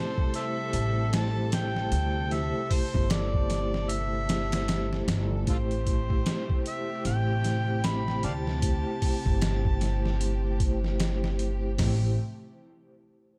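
A swung sixteenth-note groove at 76 BPM in 4/4 drives this dark, melancholic trip hop excerpt in A minor, built on a compressed, pitched-down sampler drum kit with a thumpy kick sitting up front beside a woody pizzicato upright bass that enters at 0.7 seconds. An amplified, overdriven harmonica carries the melody with tongue slaps, scooped notes and tape echo, while a mellow, close-miked vibraphone played with soft mallets adds tremolo, 12-bit sampler grit and echo, its filter sweeping from 5.5 to 11.8 seconds. A clear symphonic string section holds smooth, bowed chords beneath, set in a small room with light reverb.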